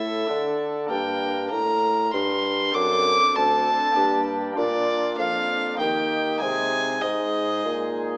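A close, up-front violin carries the melody in a period style, its gut-string tone airy and reedy as a single player bows across a range from D5 to D6. This is a solemn, flowing baroque-style sonata movement in 3/4 at 98 BPM, tuned to A4 = 441 Hz, heard as a short cut from a longer piece. Beneath it, a chamber organ on a cornet solo stop supplies the continuo accompaniment with a nasal voicing, audible chiff and a tremulant. A mellow bassoon holds the bass line between D2 and Eb3, shaded with light vibrato in a classical manner. The harmony moves from Gm through D7/F# and back to Gm, then on to Bb, Eb and Ab by 6.4 seconds. A wet recital-hall reverb surrounds the ensemble, yet the whole comes through with a small-speaker sound.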